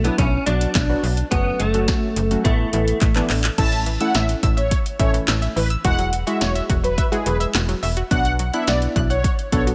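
Synth-pop at 106 BPM in A major, nostalgic and bright, where a clean, direct-recorded electric guitar carries the melody with ensemble chorus and tape echo until 3.3 seconds over detuned sawtooth keys, a snappy, metallic FM slap bass and an overdriven deep house kit with a punchy snare, handclaps and crash, and after a drum fill from 3.0 seconds a dark, brassy synth line with phaser and bright analog pluck arpeggios enter at 3.6 seconds, all in a light reverb, as the chords move from Bm through F#m and Asus2 to A, Eadd9 and back to Bm in this section of a longer piece.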